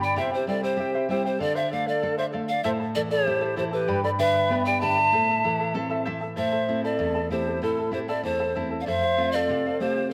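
From the first moment, a polished pan flute carries the melody up front with airy tone, crisp, chiffy attacks and vibrato, joined by a large end-blown quena on an expressive, tongued second line, a fingerpicked charango shimmering on its double strings, and a full-bodied nylon-string guitar with audible finger squeak. This festive yet wistful Andean folk excerpt moves at 96 BPM in a straight 2/4 in A minor, set in a moderate scoring-stage reverb. The guitar adds a fill from 5.4 to 6.4 seconds, just before the second section begins at 6.4 seconds.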